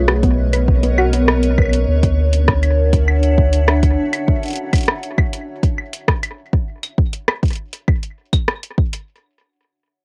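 Home-cassette sound with light reverb frames this playful, wistful IDM excerpt, where a blurred granular cloud pad holds Bmaj9, Dmaj9 and F#maj9 chords over a round sine sub bass while a warbling, wave-folded dusty pluck spins brief chorused arpeggios through tape echo, and an overdriven electronic kick and a booming analog drum machine of claves, metallic hi-hat and rim click carry on alone after the pad fades at 4.3 seconds until 9.1 seconds.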